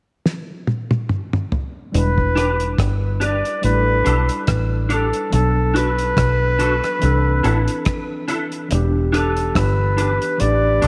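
A cloth-damped, thuddy drum kit opens this smooth, longing lovers rock reggae excerpt alone with a fill, its fat snare and tight kick sitting dry and up front. At 1.9 seconds a deep, round dub bass arrives with a worn, slightly out-of-tune tine electric piano carrying slapback echo, and at 2.0 seconds a breathy, whispered flugelhorn takes the melody with light vibrato and tape echo, joined by scooped, chorused clean guitar stabs at 2.4 seconds. The chords move through Em7, A7sus4, Bm7 and C69 under a moderate echo chamber reverb, with the swung sixteenth feel keeping the groove relaxed and intimate.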